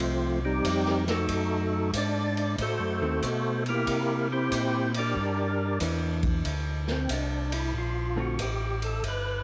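A fat, lightly overdriven tonewheel organ with key click and third-harmonic percussion carries the melody up front through a slow rotary speaker and chorus vibrato in this greasy, bluesy soul jazz organ trio excerpt at 93 BPM in swung 4/4, while a round, dark second organ holds the bass, a distant, roomy drum kit with boomy kick, ride, hi-hat and snare plays behind them, and a clean, picked hollow-body electric guitar adds accompaniment from 3.0 to 8.4 seconds over F9, F#dim7, C9 and Dm7, all set in a small room with light reverb.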